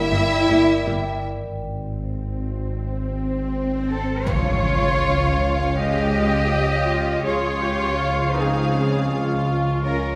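Eerie and tense, this brief cut from a longer suspense film score moves at 81 BPM in 4/4, set in a wet recital hall with a 1.5-second reverb tail. A distant violin section carries the soft-attack, expressive melody in a narrow high register, while a second violin section adds a smooth, even second line beneath it. Up front, a lush, focused cello section holds the bass, supported by a double bass section in the background and an evolving sawtooth and pulse-wave analog drone with chorus that sustains in the low register. A very quiet, dark French horn section and an ethereal, glassy glass harmonica hold sustained chords, and a close viola section with light vibrato plays accompaniment from 0.1 to 0.9 seconds and returns at 5.7 seconds. The harmony opens on G minor before dropping away to a break at 1.2 seconds, where an electronic swell builds from 2.3 seconds into an impact at 4.3 seconds that lands on a D-flat chord.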